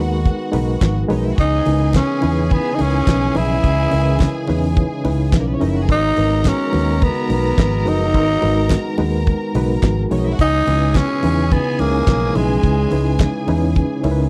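Disco with a sultry, glamorous mood, this short cut from a longer piece rides on a damped 70s drum kit with a fat snare, tight kick, hi-hat and handclaps, a punchy, round fingered electric bass, and very quiet congas with a thick-skinned, hard-hand sound. A reedy, worn electric piano with fast tremolo, slightly out of tune, holds down the accompaniment over a G#m7 chord, while a lush, bowed string section adds a second line and a mellow French horn section sustains soft chords underneath. From 1.4 seconds a raspy, growling tenor saxophone takes the melody up front with scooped notes in a jazz style, all captured in a dry, close 1970s-style studio sound with small room ambience.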